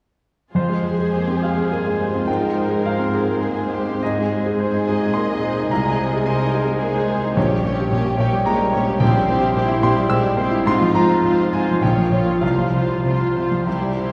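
Classical romantic music for piano and orchestra in F minor, this brooding, tragic passage moves in a rubato 3/4 at 93-111 BPM, cut from a longer work. A clear, natural grand piano sits up front carrying the melody, while a lush, expressive violin section plays a bowed second line with vibrato, and a focused viola section and smooth-topped cello section supply accompaniment and bass from the background. All four parts play together from 0.5 to 14.1 seconds, passing through Fm, Ab, Gdim/Bb and C7/Bb before settling on Csus4, and a concert-hall reverb places the ensemble further back in the room.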